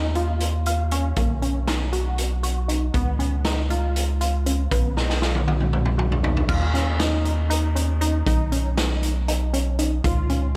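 A rubbery, hollow square-wave bass anchors this tense, intricate progressive instrumental excerpt in 7/8, with a raw, gritty garage drum kit punching up front and rolling through a fill from 5.0 to 6.5 s, while a tight sequenced synth spins mellow, detuned sawtooth arpeggios through chorus and delay, and the band sits in a lush hall reverb that gives it a big arena sound.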